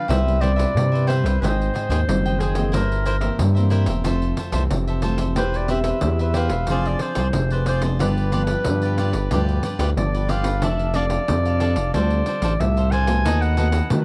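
This lively, festive samba and choro piece is cut from a longer performance and takes a dry, close 1970s-style studio sound with small room ambience. A warm, soft-attacked clarinet in classical style carries a solo from 0.1 seconds, heard as distant and roomy. A bright, crisp picked cavaquinho and a dark, fingerpicked nylon-string guitar, sitting in the background with some finger squeak, supply the harmonic bed. Up front, a smooth gliding synth bass blends sawtooth and triangle tones with a wave-folded edge, fast attack, sustained notes, vibrato and portamento. A jingly, band-limited pandeiro adds a vintage acoustic shimmer. The harmony moves through rich chords such as Cmaj7, Abmaj7, Fm6 and G7, closing on B7/D# at 13.3 seconds.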